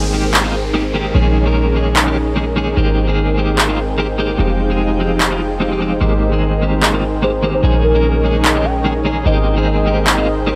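A clean, picked electric guitar with tremolo and dub echo opens this playful, bright future bass excerpt alongside huge, detuned supersaw chords through a low-pass filter, a very quiet breathy pad, a deep, boomy 808-style bass and a background downlifter that lasts until 2.8 seconds, before overdriven, layered handclaps arrive up front at 0.3 seconds and a velvety, mellow synth lead with chorus and tape echo carries the melody from 6.0 seconds over a half-time, lightly swung groove and lush Abmaj9, Eb7sus4/Bb and Fm9 harmony.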